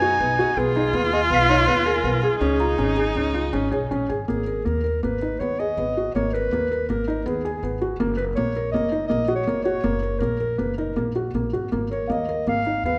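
Set in an uneven 5/4 with a straight feel, this cut from a longer piece of contemporary chamber music moves with a hypnotic, urgent pull. A mellow clarinet carries the classical-style solo melody throughout, its smooth top sitting over a felt-muted upright piano whose soft, intimate arpeggios sit up front with audible action noise and short sustain. Beneath them, a pizzicato upright bass on gut strings gives a woody, dark, thumpy foundation. A single bowed viola adds a focused, vibrato-rich second line up front before falling away at 4.0 seconds, while a small celesta, bell-like and airy, drifts in the background from 1.3 seconds and returns near the close at 12.1 seconds. Harmony shifts from Abm/Cb and Dbadd9 toward a rootless Ebm7/Gb and an Absus2, all framed by a moderate concert hall reverb.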